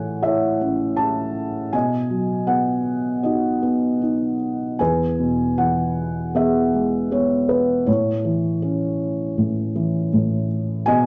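A felt-muted upright piano opens this short classical fragment, a lyrical solo played with rubato in 4/4. Its tone is soft and mellow, the thick felt giving each note a muted, intimate quality, and the instrument sits up front and close. The part spans E2 to A5, moving through A, B and E chords before settling back on A at 7.9 seconds. A moderate recital-hall reverb adds a gentle sense of space around the piano, while the dark production keeps the sound below 7.5 kHz. The mood stays calm and warm across the 11.1 seconds of this passage, which is cut from a longer piece.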